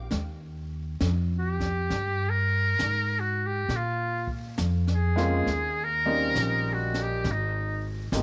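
Recorded with the intimate air of a small room, this short cut from a longer jazz ballad has a tender, swung feel. A woody, thumpy upright bass sits up front beside clear, short-sustained piano accompaniment, while a polished brush kit adds a high-tuned snare, hi-hat and boomy kick. At 1.4 seconds a metal-muted trumpet takes the melody as a solo, its buzzy, thin tone brilliant and forceful with vibrato, yet slightly distant.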